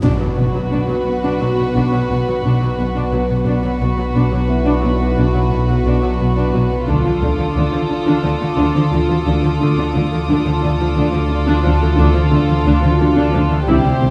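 A warbling, resonant analog drone with chorus anchors this mysterious, uneasy cinematic suspense cue in B phrygian at 88 BPM in 5/4, beneath floating sul tasto violins carrying the melody and a second line, a woody viola accompaniment with vibrato, a distant cello riff, a very quiet, intimate studio cello and double bass sharing the bass, an electronic impact that sounds until 3.5 seconds, and a mellow, metallic soft-mallet vibraphone that gives way at 6.9 seconds, as the harmony moves from Bm to Dm, to a high violin texture, the whole bathed in a wet concert hall reverb.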